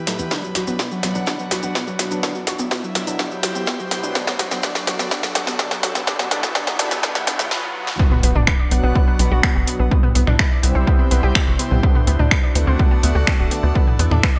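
A dramatic, hypnotic stretch of melodic techno cut from a longer piece, it opens on a build-up where filter sweeps move through a fat, detuned analog lead, a warbly, dusty pluck arpeggio and a brassy pad of stabs, over a breathy pad, grainy cabasa and a tight sawtooth sequencer bass, the synths pumping against a punchy, up-front kick. A drum fill with cracking snare, metallic hats, snaps and toms in gated reverb runs into a short break, and the lead and cabasa stop at 7.5 seconds. At 8.0 seconds the drop lands with a very quiet impact, leaving the pluck, pads, bass and drums to drive on with a bright 1980s-style digital sheen.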